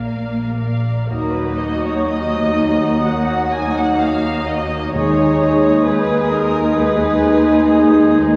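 Muted strings open this elegiac, yearning fragment of a slow romantic orchestral movement: a veiled violin melody set back in the distance, a second violin line with a smooth top and light vibrato, a lush viola accompaniment, close-sounding cellos carrying the bass, and double basses joining just after them in the background. At 1.1 seconds the winds and brass enter together, with a silvery, pure concert flute and a distant, roomy oboe holding high second lines beside a clear, close-miked but very quiet clarinet. A mellow bassoon fills out the accompaniment, while a mellow French horn section sustains soft chords underneath. The pulse moves in four with a flexible, rubato feel, and the harmony settles from Bb into Ebm before shifting to Abm/Eb near 4.9 seconds. Timpani struck with medium mallets on calf heads sound a single pitch briefly from the background around 5.0 seconds. A wet scoring-stage reverb gives the orchestra a somewhat distant, dark and yearning atmosphere.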